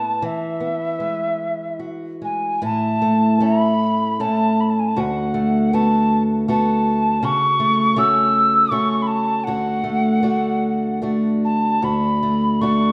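Dark and soaked in a long scoring-stage reverb, this tender, wistful Celtic slow air drifts in a rubato 3/4 at around 72-83 BPM, with a hollow wooden whistle carrying the melody from E5 to E6 with vibrato and a tongued chiff over a boxy, woody, fingerpicked ladder-braced acoustic guitar on old strings, moving from Eadd9 through A, D6 and F#m7/C# to D in a short passage cut from a longer piece.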